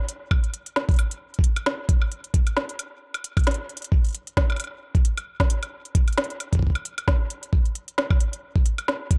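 A dry, close-up mix opens this short cut from a longer IDM piece, a cerebral and eerie groove at 133 BPM in 4/4 with a 56% swing on the 16ths. An overdriven electronic kit enters at 0.1 seconds with crisp hi-hats, a woody snare and a woodblock, all trailed by dub echo and set in a small room, while a compressed, pitched-up electronic kick joins at 0.3 seconds with a gritty, thumpy, tape-warm punch captured in a large room. Both drum parts sit up front and play through to the end at 9.2 seconds.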